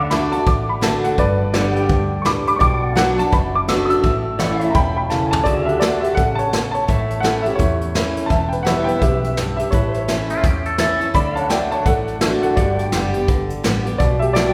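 Bathed in a lush recital-hall reverb, this easygoing, nostalgic swung honky-tonk country excerpt opens with a dark, woody, slightly detuned upright piano taking the melody as a solo until 5.5 seconds, over a bright dreadnought steel-string acoustic guitar, a round, foam-muted vintage electric bass, up-front soft brush drums that play a fill at 5.1 seconds, a warm pedal steel guitar sustaining chords with volume swells in the background, and a flute-like tonewheel organ turning through a slow rotary speaker early on, before a clean, scooped, twangy electric guitar slips in a brief second line at 10.3 seconds.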